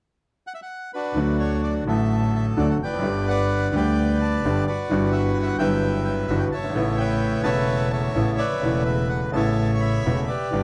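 A reedy bandoneon carries the melody from 0.5 s, up front and bathed in plate reverb, and at 1.1 s a bright upright piano with audible action noise and long sustain joins it alongside a dark, bowed double bass whose vibrato and portamento add a woody depth, giving this nostalgic, playful tango excerpt in D major a rubato feel around 128 BPM as it moves through D, G, Emadd9/G and Aadd9 in a warm, dark studio sound.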